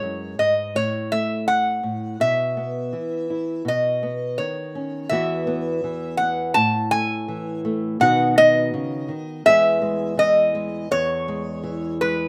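Acoustic folk in E major at 83 BPM, gentle and hopeful, with a lap resonator guitar carrying the melody in a bright, metallic, nasal voice, played with slide and fingerpicks and given a slapback echo. Beneath it, a small, dark nylon-string guitar is fingerpicked as accompaniment, both parts sitting up front in a dry outdoor sound. This short cut from a longer piece moves from an opening passage built on B chords into a second section at 5.1 seconds that travels through Esus2, A5, B, E and C#m/E.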